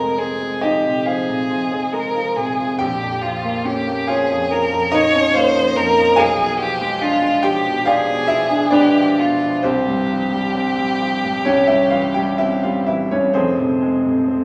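The rhythm moves in a flexible rubato over a 4/4 metre, giving this romantic classical duo an unhurried, breathing pulse. A single bowed violin carries the melody with a rich, expressive tone, soft attacks, vibrato and gliding portamento, sitting up front yet with a faintly distant quality. Beneath it, a bright baby grand piano supplies the accompaniment across a broad span from deep bass to the upper register, its brilliant, natural sound ringing with long sustain. The harmony moves through a diminished chord and a suspended chord before resolving back to the home minor chord at 13.4 seconds, underscoring a yearning, solemn mood. The violin falls silent at 12.9 seconds while the piano continues to 14.4 seconds, all set in a wet recital hall reverb with small room ambience, as a passage cut from a longer piece.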